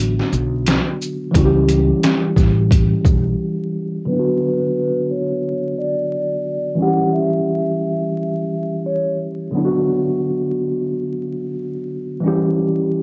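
A worn, slightly out-of-tune tine electric piano sits up front through the whole excerpt. It is lightly overdriven and heard through built-in speakers, with cassette tape grit and a plate reverb as it trades between B minor and C# diminished chords. This reflective yet tough boom-bap hip-hop fragment moves at 88 BPM in 4/4 with a 60% sixteenth-note swing. At first a woody pizzicato upright bass joins a compressed, pitched-down sampler-style trip hop kit with a thumpy kick, a medium-tuned snare, hi-hat and shaker, overdriven and muffled as if re-recorded in a small room. Both drop out by 3.3 seconds, and after a short break a mellow vibraphone played with soft mallets carries the melody from 4.1 to 9.2 seconds, ringing with a slow motor vibrato and tape echo while a filter sweep runs beneath. The whole excerpt has the feel of a home cassette recording, with vinyl crackle and a modest booth ambience.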